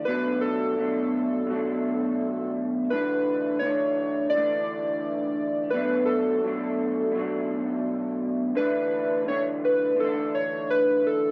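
Warbling, nostalgic synth keys carry the melody from the start over a dark, slightly broken-up electric guitar played through a small old amp, which holds the accompaniment beneath them in this dreamy, sunny indie pop fragment at 85 BPM in D major. The keys have a vintage, tape-worn quality with subtle chorus and analog delay, while the fingered, compressed guitar adds analog chorus and vibrato as the harmony alternates between Bm7 and Dsus2. Both parts sit up front in a damp small-room reverb, giving the home cassette recording an intimate, hazy feel.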